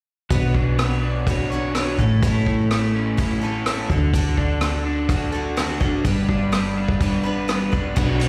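Folk rock with a heartland rock drive, this short cut moves at 125 BPM in a straight 4/4 with an open-road, hopeful mood, heard live through a club PA with light reverb. A shimmering, octave-doubled twelve-string acoustic guitar picks the accompaniment beside a crunchy, double-tracked overdriven electric guitar riff, both touched with slapback echo. Underneath, a round, hollow-body short-scale bass and a vintage kit with a punchy kick, dark cymbals, hi-hat and rim click carry the changes from Bmadd9 through A and D to G.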